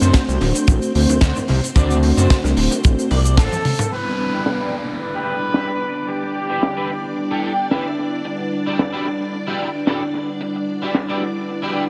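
A fat, detuned sawtooth analog bass and a tight, up-front acoustic kick drive this groovy, feel-good nu-disco passage at 111 BPM in G major, cut from a longer piece. Both drop out around 3.5 s, where a drum fill leads into the second section. A small-room funk kit with a high-tuned snare and filtered, delayed hats and toms carries on, while very quiet, hard-handed bongos and congas add color until 3.9 s. A round, brassy synth with chorus and 12-bit sampler grit and a lush string machine with slow-attack ensemble chorus both pump against the sidechain. Above them, a slightly broken-up, picked electric guitar plays a filtered riff with delay. From 3.4 s a mellow, punchy trumpet section with light vibrato takes the melody, an electronic downlifter falls through the middle, and the chords move from D7 to G6 to Em9 in an echo-heavy mix with light small-room reverb.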